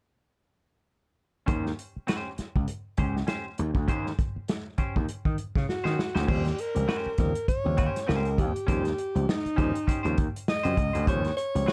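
Funky and playful, this excerpt is a swung funk groove at 100 BPM in Eb mixolydian, with a gritty, overdriven slap bass and a roomy soul drum kit with a punchy kick up front, while a bright, clean semi-hollow electric guitar with spring reverb plays accompaniment from 1.5 seconds. As a drum fill begins at 5.7 seconds, a breathy alto saxophone takes a close-miked jazz solo with subtone and vibrato, and at 6.3 seconds a fat, lightly overdriven tonewheel organ adds percussive stabs through a stopped rotary speaker in the background as the harmony shifts from Eb6 to Eb13. The production is dark and dry, with little reverb.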